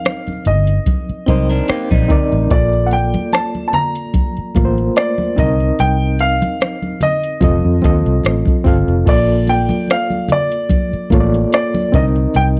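Romantic and lush, this short cut of 1970s-style soul sways at 73 BPM in Bb major with a gentle swing, the baby grand carrying an intimate melody, its action noise audible, over a gritty, reedy electric piano pulsing with fast tremolo through a combo amp. A soft vintage rhythm box with a deep kick, metallic hats and rim clicks sits up front beside hard-handed congas and a round, foam-muted fingered bass, while a twangy, slightly broken-up electric guitar riff flickers briefly from 1.3 to 2.5 seconds. The dry, close studio sound frames chords moving through Cm9, Bbmaj7, Cm7 and F7.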